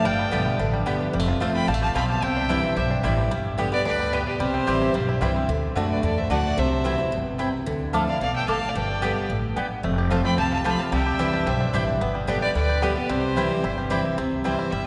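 A bright, full-bodied dreadnought acoustic guitar sits up front, picking a steady accompaniment with the sparkle of fresh strings through this lively, virtuosic bluegrass passage in C major at a brisk 221 BPM in a straight 4/4. A clear, intense bowed fiddle carries the melody high above, with light vibrato, while a second bowed fiddle, rich and focused, plays its own second line in the background. A twangy, percussive fingerpicked banjo adds a background melody, dropping out at 5.5 seconds and returning at 9.8 seconds. A warm, double-strung mandolin punctuates with picked stabs, and a dark, thumpy pizzicato upright bass on gut strings anchors the low end. The chords move through G, F, Cadd9 and C, with a turn to D and Dmadd9 in the second half. Everything is bathed in a long, wet cathedral-style reverb that places the ensemble in a church or concert hall, and the piece is cut from a longer performance.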